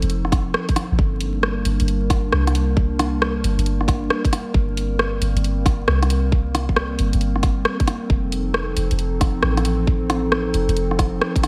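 Ghostly and rainy, this future garage fragment drifts on a warbling, nostalgic tape-like pad whose dark, chorused chords carry slow attacks and long releases, pumping against the sidechain alongside a deep, round 808-style bass that sits up front with a fast attack and a decaying tail. A garage kit of hi-hat and rim click swings over the 16ths, joined at 0.3 s by a tight, layered electronic kick, both given a touch of studio reverb. Vinyl crackle and light digital ambience frame the harmony as it moves from F7 to G minor and back to F7 at 8.1 s.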